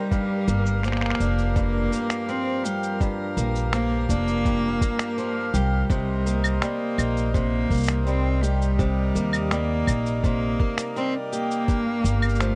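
An intimate bowed cello with light vibrato, a soft attack and an airy bow carries the wistful, delicate melody of this folktronica piece over reedy accordion chords roughened by vintage 12-bit sampler grit, bright, boxy swing-style guitar arpeggios, a woody, dark pizzicato upright bass with tube saturation, a muffled, thumpy sampler-style kick, and tape-toned electronic cabasa, finger snaps and claves, all in a dry, close 1970s-style studio sound, while a very quiet, twinkling granular shimmer sparkles only until 5.9 seconds.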